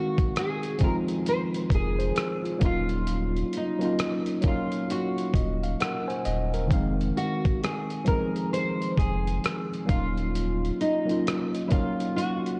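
A slow, swung 4/4 groove at 66 BPM opens this hazy, reflective lo-fi hip hop excerpt, as a dusty soul sampler-style drum kit enters at 0.2 seconds with a thumpy kick, hi-hat and rim click, its compressed, gritty sound carrying 12-bit sampler grit and the air of a large room. A tine electric piano plays accompaniment in F phrygian over Fm7 and Ebm7 chords; it sounds worn and slightly out of tune, lightly overdriven and filtered, as if heard through built-in speakers. Alongside it, a fingerpicked nylon-string guitar carries the melody with a full-bodied, classical tone, fresh strings and audible finger squeak, colored by subtle chorus, a low-pass filter and tape echo. A round, deep sine sub bass arrives at 1.7 seconds and holds sustained low notes until 10.7 seconds. All four parts sit up front, wrapped in light reverb and the soft haze of cassette tape.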